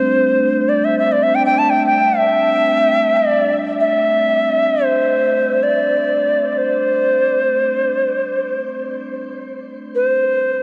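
A bright, reedy cedar flute in the Native American style carries the melody from the very first moment, sitting up front with a pure wooden tone, gentle vibrato, tongued notes and an audible chiff. Shimmer reverb and tape echo trail behind its lines, lifting the tune into a glowing haze. Beneath it, a bronze singing bowl struck with a felt mallet rings softly in a low register, its metallic hum mellow and smooth with a slow beating in the tone, until it drops out of the texture at 6.1 seconds. This is peaceful, spacious world meditation music that floats freely rather than following a pulse, cut from a longer piece and running to 10.6 seconds. The production is dark and soft-edged, with the top end rolled off, while a huge, wet ambient reverb with a long tail surrounds both instruments and opens up a vast sense of space.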